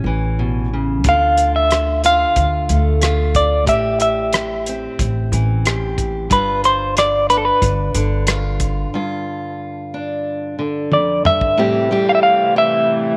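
A straight 4/4 pulse at 91 BPM carries this intimate, melancholic acoustic folk-pop ballad in A minor, heard as a short cut from a longer piece. A clean, dark semi-hollow electric guitar sits up front with the melody, its hollow-body tone shimmering through tremolo, while a full-bodied fingerpicked steel-string acoustic guitar supplies the accompaniment throughout. An up-front upright bass adds woody, thumpy pizzicato notes until 8.8 seconds, and from 1.0 seconds a cloth-damped, thuddy drum kit with a tight kick and rolled-off top plays hi-hat, kick drum, rim click and toms, closing the break with a fill before it stops at 11.6 seconds. The harmony moves from A7 through Dm, Am7 and G7, settling on Am7 as the second section opens. There a rich, earthy chamber string section enters at a distance, holding bowed chords with light vibrato. A moderate plate reverb lends the whole a lingering space.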